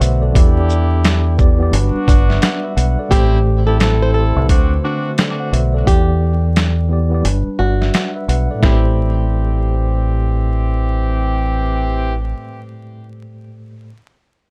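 This reflective, gritty boom-bap hip-hop excerpt opens at once with a pitched-down, compressed sampler-style drum kit, its thumpy kick, medium-tuned snare, hi-hat and shaker sitting up front at 87 BPM with a swung 16th feel in A dorian. A deep dub fingered electric bass, dark and round, holds the low end alongside a mellow tine electric piano that comes through cassette-tape coloring and filtering as if from built-in speakers. From 0.4 seconds a horn section adds smooth-topped stabs with light vibrato, treated with filtering and a digital delay, over chords moving through Em7, Gmaj7, Am7 and D7. A bright, fingerpicked flamenco guitar carries the melody from 3.1 seconds, and the drums stop at 8.8 seconds, leaving the bass, keys and horns to trail off as the guitar finishes its line. The mix is dry, with a steady layer of vinyl crackle beneath it all.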